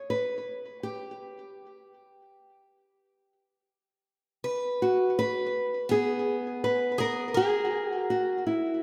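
A bright, fingerpicked nylon-string guitar opens this reflective, intimate folk excerpt alone at 83 BPM, carrying the melody between E4 and B4 with a touch of delay, its fresh-stringed tone small and up front. At 4.4 seconds a boxy, picked acoustic archtop guitar joins beneath it with arpeggios, and the harmony settles onto a rootless E chord at 7.0 seconds. A lush hall reverb soaks the mix, giving the whole dreamy passage a long, wet tail.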